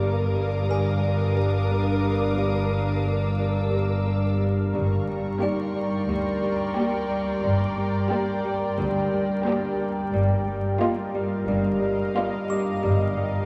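A straight 4/4 pulse at 89 BPM carries this tense, ominous suspense-film cue in G phrygian, which opens on Bb/G, moves to Gm and settles on Ebsus2/G, heard as a cut from a longer piece. An up-front, fingerpicked Celtic harp rings out a low riff over a bowed double bass section with soft attack and a cello section in intimate close focus, while an evolving, detuned wavetable pad with chorus and built-in reverb sustains morphing chords beneath a soft, background symphonic violin melody and a lush, woody high violin texture. A delicate, tinkling music box enters at 0.7 s, and from 5.4 s a very quiet violin second line and viola accompaniment join, the whole cue steeped in a cathedral reverb with a church-hall ambience and vinyl crackle.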